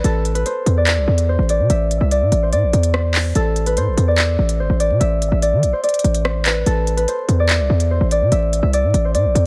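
A thumb-plucked, ringing Celtic harp melody, filtered and trailed by tape echo, leads this menacing, cold half-time drill clip at 145 BPM in A minor over a single Am chord, sitting up front beside a punchy, heavy 808-style sine bass with a noise layer and fast attack, while an electronic drill kit of crisp hi-hats, handclaps and rim clicks plays throughout the 9.5 seconds in a dry mix dusted with vinyl crackle.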